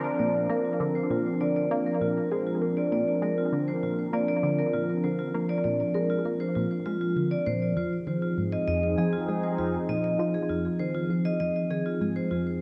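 A bright, resonant pad of detuned sawtooth and sine tones sits up front with sustained chorused chords, evolving slowly from Bbadd9 to Fm7 at 7.8 s in this cosmic, mysterious ambient space music in 4/4. A ringing, metallic vibraphone, struck with medium hard mallets and the motor off, plays arpeggios through a low-pass filter and delay. Beneath them a tight, mellow sequenced synth drives a plucky riff coloured by chorus, phaser and delay, all bathed in a wet concert hall reverb across this 12.6-second cut from a longer piece.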